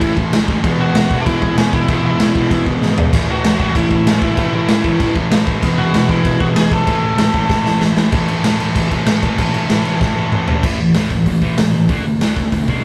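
The whole band crashes in at once on this rowdy, upbeat punk rock excerpt, with a raw garage drum kit sitting up front: a punchy kick, medium-tuned snare, hi-hat, crashes, a splash and toms, all gritty and saturated in a pumping stone room with a rolled-off top. Two distorted electric guitars churn out riffs behind it, one compressed and the other overdriven, both bright and picked, while a growly, fuzzed picked bass anchors the low end from the background. Over this a biting lead guitar plays an overdriven melody until 7.8 seconds, over a straight drive that alternates between A and E. Drum fills punch through the transitions, and after the second rhythm guitar stops at 10.6 seconds the remaining band moves through A5 and D5 chords to the end. The rough rehearsal-room sound carries tube saturation, a moderate booth ambience and a faint mains hum.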